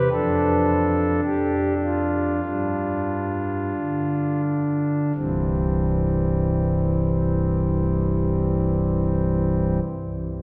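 Reverent and serene, this short chorale-style classical passage for solo pipe organ moves in a rubato 4/4 at 42-54 BPM in C major (tuned to A4 = 438 Hz), its smooth, romantically voiced principal stop sitting up front from 0.0 to 9.8 s, ranging from C1 to A4 and slowing through the opening 5.2 seconds over Dm/F and G5 before arriving on C, all wrapped in a long, wet cathedral reverb heard from further back in the room.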